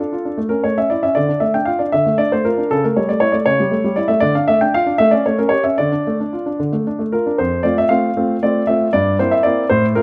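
A classical-period piano sonatina in D minor unfolds in 6/8 at roughly 73-81 BPM counted in dotted quarters, its rubato phrasing giving this short extract an elegant, serious character. A solo baby grand piano carries the whole piece across a range from F2 to G5, its tone warm and natural and placed up front by close, detailed microphones. The opening phrase moves through A, D minor and A7 over C sharp before settling back on D minor. At 7.4 s the music turns to a new section, shifting toward F major and then C7 over G. A moderate recital-hall reverb lends a gentle bloom around the sound.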